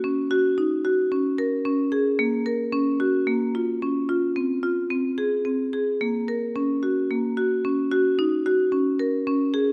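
Contemporary instrumental music for solo marimba, urgent and restless in mood, this short passage is cut from a longer piece. It moves at 221 BPM counted in eighths, in a straight 7/8 metre, set in E-flat Dorian with tuning at A4 = 443 Hz. The marimba, struck with hard mallets on rosewood bars, plays alone from 0.0 to 9.7 seconds, staying between Bb3 and Bb4. Its tone is woody, bright and percussive, close-miked and dry, with a full body that sits up front. A light reverb surrounds the instrument, adding a touch of space to the sound.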